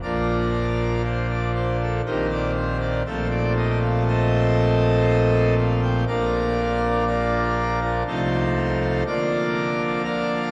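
Solemn and dark, this classical chorale-style fragment of a longer work moves at a rubato 60 BPM in 3/4 and Bb major, its harmony passing from Bb through Cm7/Bb and F7/Bb before returning to Bb and closing on F7/C and Bb/D. A solo pipe organ plays throughout on full organ with mixtures, spanning Bb1 to G5 in a majestic, brilliant, romantic voicing placed up front. A cathedral reverb with a 4.7-second decay surrounds it in a dark production.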